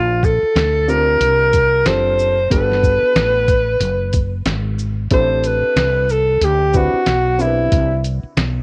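A breathy alto saxophone and a woody fretless bass open this smoky, nocturnal jazz-hop excerpt together, the sax carrying the melody up front with vibrato and scooped notes while its tone still sounds distant and roomy. The bass is round and hollow-bodied, with an amped, up-front presence beneath the lead. At 0.2 seconds a lo-fi, sampler-style drum kit joins with a muffled, compressed, pitched-down sound: a thumpy kick, a medium-tuned snare, hi-hat and shaker, all played with a lazy swing. From 0.9 seconds a dark baby grand piano adds mellow, vintage-toned chords in the background, its action noise audible in an intimate, smooth setting. The harmony moves through lush extended chords such as Bbmaj13 and Am11, and the sound stays dry and close throughout.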